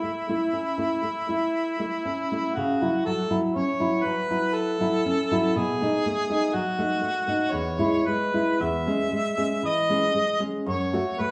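A warm harmonica sings a lyrical classical melody with light vibrato over dark, fingerpicked nylon-string guitar with audible finger squeaks, forming a serene romantic duo that moves in a rubato three-beat lilt through a wet, large-studio reverb, the two players heard live together in one room in this brief fragment of a longer piece.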